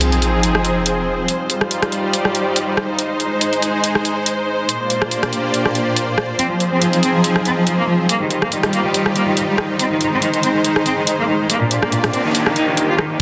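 A rich, nasal cello with light vibrato and delay carries the melody from 6.4 s through this heavy, menacing half-time wobble dubstep excerpt at 141 BPM, where a lush, detuned supersaw pad holds sustained chords cycling through Fm, Eb, Ab and Bb, dark, con sordino studio strings add a veiled texture, and both pump with sidechain. An electronic drum kit with bright hats and rim clicks sits up front, a sub drop impact opens the passage, and a noise sweep arrives at 11.8 s, set in moderate plate reverb under a dense, heavily limited master.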